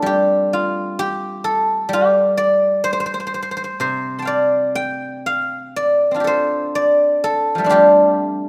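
Rubato in 2/4 at around 60-65 BPM, this short, serene fragment of a longer Chinese traditional piece unfolds in the G shang mode with a pastoral calm. A solo guzheng, played with fingerpicks, carries the entire 8.5 seconds, its silvery, ringing tones spanning C3 to C6. The instrument sits up front in a light reverb, its tone warm and acoustic.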